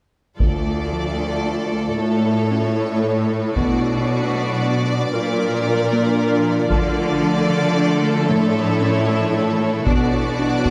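Vast and brooding, this cinematic hybrid orchestral and electronic film-score excerpt moves at 76 BPM in a straight 6/8 in D harmonic minor, building throughout over a filter sweep as the harmony cycles through Dm, A, Bm and Bb. Up-front cellos carry a rich, lush bass beneath smooth, even violas and a focused, vibrato-laden violin second line, while hard-stick taiko drums hit with a compressed, saturated edge. A very quiet, harp-like synth pluck rings out soft, dark arpeggios, and from 1.2 seconds a swarming, warbling, detuned drone sustains tense, evolving chords in the background, all captured with close, detailed microphones and light reverb.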